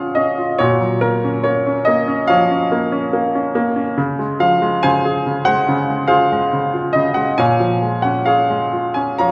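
Melancholic and reflective, this short excerpt of lyrical classical solo piano unfolds at a rubato 70 BPM in 4/4, with a clear, present grand piano placed up front spanning Bb2 to Bb5 as it moves through Bbm7, Gbmaj7/Bb and Dbmaj7 before returning to Bbm7 at 7.4 seconds, all bathed in a wet recital hall reverb with lossy compression artefacts.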